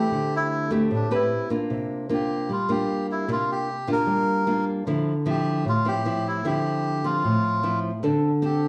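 Wistful and melancholic, this short bossa nova fragment at 152 BPM in a straight 4/4 sets a reedy, breathy melodica melody with plate reverb up front over a small, fingerpicked nylon-string guitar accompaniment, moving through chords from D7sus4 and Bb69 to C9sus4 at 1.7 seconds and on to Dm9, all within a small room with moderate studio reverb.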